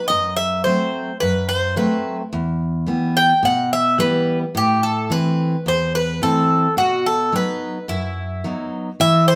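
Recorded live in a single room, this short passage from a longer Greek folk piece sits in a wet stone-room reverb, giving it a cool, bittersweet air. A bright, metallic bouzouki carries the melody up front, its picked double strings partly octave-doubled, while a full-bodied dreadnought steel-string guitar, also picked and close, supplies a warm accompaniment. The harmony moves from F#dim through Em and Am to B across the nine-second section.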